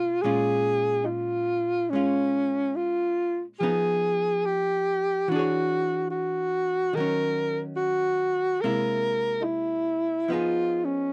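A breathy alto saxophone and a miked, amplified archtop guitar begin together at 0.0 seconds in this melancholic, intimate jazz ballad, a short section cut from a longer piece. At 72 BPM in 4/4 with a swing feel on the eighth notes, the saxophone sits up front as the soloist, carrying the melody with a clear subtone, vibrato and scooped notes in a jazz style. The hollow-body electric guitar accompanies underneath at a lower level, its picked tone dark and clean. The harmony moves through Bbm7, Fm7b5, E13, Ebm7 and Caug7 before returning to Fm7b5 at 10.3 seconds. The sound is dry and close, like a 1970s studio session, touched by light reverb, and both parts play through to 11.1 seconds.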